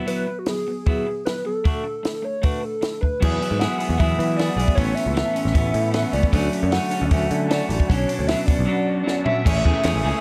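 A straight 4/4 groove at 154 BPM drives this upbeat, jangly indie rock excerpt in A major, with a dry, up-front cocktail drum kit (punchy kick, high-tuned snare, dark cymbals, fills at 3.0 and around 9.1 seconds) under a clean, picked electric guitar riff and a hollow, woody square-wave lead that warbles with vibrato, chorus and slapback echo. At 3.2 seconds a growly picked electric bass enters alongside a slightly broken-up second guitar through a small old amp, set in the background with ensemble chorus and slapback, and a very quiet, lightly overdriven tonewheel organ with key click and slow rotary holding chords from Eadd9 through Dmaj7 and Bmadd9 toward Amaj7. A crisp group handclap flicks past just before the end, all within a dark, warm production with little reverb.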